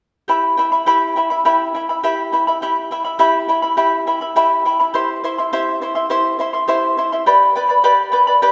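A lone charango opens at 0.3 seconds, fingerpicked on its double strings with a warm, shimmering tone and some octave-doubled strings, sitting up front in a wet recital-hall reverb that lingers around it. This short passage of Andean folk moves in a straight 4/4 through Em, C and G, giving a melancholic, wistful mood before it is cut off at 8.5 seconds.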